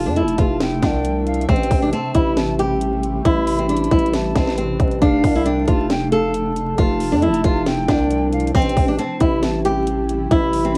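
A fingerpicked flamenco guitar carries the melody up front, its fresh strings given a worn cassette-tape tint, while a breathy, mellow concert flute with vibrato traces a second line above it through tape echo. From 0.2 seconds a hard-hitting trap kit, with a clipped kick, sharp snare and metallic hats, drives a half-time feel beside a growling, buzzy 808-style bass, and a blurred granular pad drifts in the background behind them. This menacing hip hop fragment, cut from a longer piece, has the dry, crackly character of a home cassette recording as it moves between F6 and Am7 chords.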